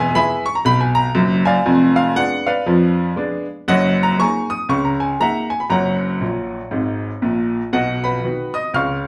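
Exuberant and playful, this short cut from a longer stride jazz piece swings at 119 BPM in B major, with a solo baby grand piano, clear, natural and up front with short sustain, ranging from deep bass to bright treble through E, Fdim7 and F#13 changes, adding a fill from 6.2 seconds before landing on B at 7.7 seconds, all set in a wet club reverb heard from further back in the room.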